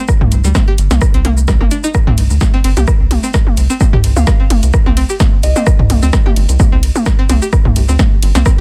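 Minimal techno with a hypnotic, cool feel, this short excerpt opens on a twangy, string-like resonator pluck riff carrying chorus, dub echo and sidechain pumping, joined almost at once by a punchy, up-front electronic kick, a house kit of cabasa, hi-hat, ride and snare, and a minimal click kit of rim click and toms with soft clipping on its snare. A rubbery, hollow square-wave bass sits dark and forward with its own sidechain pumping, while a soft, pure FM bell melody drifts in the background between 4.2 and 5.6 seconds, coloured by chorus, phaser and dub echo. The mix is dry, dense and heavily limited, with a tape-like glow on the drums.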